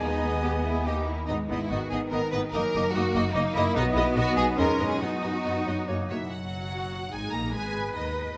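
In a rubato three-four, this stormy, restless fragment of a dramatic romantic orchestral movement sets a focused violin melody over a soft-edged second violin line, with a clear clarinet and pure flute weaving background lines until 6.1 s, dark horns holding distant chords until 6.3 s, lush violas accompanying, a bright harp ringing out arpeggios, and woody double basses beneath smooth cellos, set in a moderate scoring-stage reverb.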